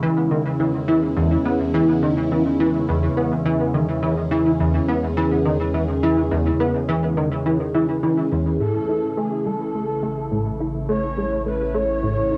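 Luminous and cosmic, this short cut from a longer piece of ambient, sequencer-driven space music moves at 105 BPM in E major before shifting to A major at 8.6 s, with a punchy, funky analog bass riff up front over a swirling phased pad and a warbling analog drone entering at 0.6 s, and a breathy, flute-like synth lead with vibrato joins to take the melody at 8.6 s, all captured as a cassette home recording with studio reverb.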